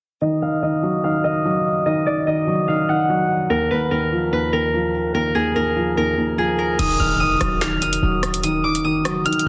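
Cold and tense, this half-time drill excerpt opens with a bright, ringing fingerpicked Celtic harp melody with delay over a dark, mellow felt-muted upright piano, both up front and low-pass filtered beneath a filter sweep, until at 6.8 s a very quiet electronic impact ushers in a punchy, tight 808-style bass and an up-front drill kit of metallic hi-hats, finger snaps, rim clicks, a crash and a woody, softly clipped snare, all in a plate-reverb space with a dense, heavily limited master.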